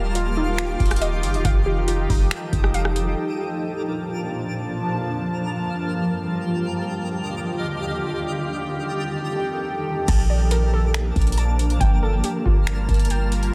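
This atmospheric cloud-rap hip hop fragment moves at 139 BPM in a half-time 4/4 feel, with a spacious, melancholic mood drifting over lush extended chords such as Ebmaj9, F9, Bbmaj7 and Gm9. A blurred, evolving granular pad holds sustained chords up front for the whole passage, bathed in its own reverb and breathing with sidechain pumping, while a faint, sparkling granular texture twinkles high above it with an octave-up shimmer. A lo-fi, warbling pluck plays arpeggios with a vintage, detuned character, colored by chorus, phaser and digital delay, alongside a deep, boomy 808-style bass. A booming analog drum machine enters at 0.2 seconds with a dry, tape-warm kit of deep kick, metallic hi-hats, rim clicks, finger snaps and crash cymbal. The beat, bass and pluck drop away around 3.1 to 3.2 seconds, leaving the pad and shimmering texture suspended alone, until all three return together at 10.1 seconds under light overall reverb.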